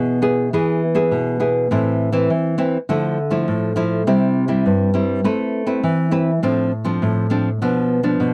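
A dry, close 1970s-style studio sound with light reverb frames this festive, joyful samba excerpt, where a solo nylon-string guitar with old strings and a woody, classical tone is fingerpicked up front across its full 8.3 seconds, moving through minor-flavored chords from E and Am to a closing Bdim.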